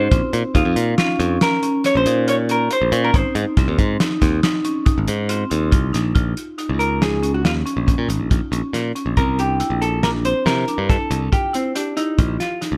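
A dark, clean hollow-body jazz guitar opens this tense, brooding progressive instrumental, picking the melody up front alongside a bright, growly electric bass, with a soul drum kit joining at 0.1 s. Set in an uneven 7/4 with a straight feel, the drums sound small-room and smooth, with a fat snare, a punchy kick and a rolled-off top. Further back, a woody rosewood marimba with medium hard mallets spins arpeggios, while a metallic, ringing vibraphone with medium motor vibrato adds a second line until 5.9 s. From 6.2 s the guitar takes a solo as the harmony moves from Bbm to C7, with the bass and marimba continuing beneath it. A studio reverb wraps the band, and the fragment is cut from a longer piece.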